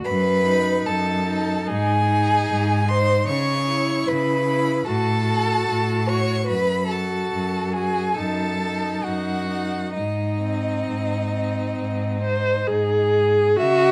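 Yearning and solemn, this slow romantic movement for string quartet moves at 64-76 BPM in 4/4 with a rubato feel, and it comes from a longer piece. A focused, vibrato-rich violin carries the melody over a second violin that sings an expressive line with portamento, while the smooth, even viola fills in the accompaniment and an intense, up-front cello anchors the bass. The harmony moves from D#dim/F# toward G#, all set in a dark production with light reverb.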